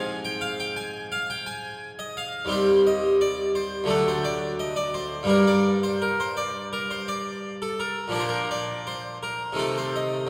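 In a freely pulled rubato 4/4, this solemn, grave baroque-style suite movement unfolds on a solo harpsichord, a plucked French-style instrument with two sets of strings whose full tone sits up front and ranges from D2 to Ab5. The harmony moves gravely from Fm/Ab through Cm/Eb, D and Gm to Bb, stopping on Adim/C at 9.6 seconds. A wet concert-hall reverb lends the sound a distant, spacious quality, and the passage is cut from a longer piece.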